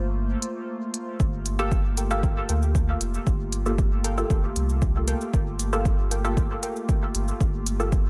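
Deep and hazy, this dub techno fragment opens on a breathy pad holding a Gm9 chord over a round sub bass and smooth hi-hat and shaker, before a punchy, up-front kick arrives at 1.2 s and a muted, filtered chord stab and a warbling, lo-fi pluck join, both trailing dub echoes through a light digital ambience while the pad, bass, stab and pluck all pump with sidechain compression.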